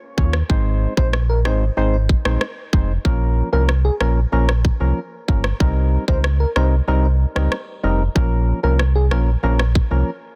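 Dense, heavily limited and modern, this short dancehall cut sits in a digital ambience and moves with a bouncy, sultry straight feel. An electronic island pop drum kit with a tight kick, rim clicks and a soft-clipped snare sits up front with a tape-warm sheen, alongside a deep sine sub bass doubled at the octave that holds full and sustained underneath. A hollow, organ-like percussive stab with a noise layer fills out the accompaniment, shimmering with chorus and pumping against the sidechain. From 1.0 seconds a round, gentle FM lead with a keys-like attack, vibrato, chorus and delay floats a soft melody over changes that move from Ab through Bbm and Cm7 back to Bbm. The kick drops out between 6.9 and 8.2 seconds before the groove returns to close the passage.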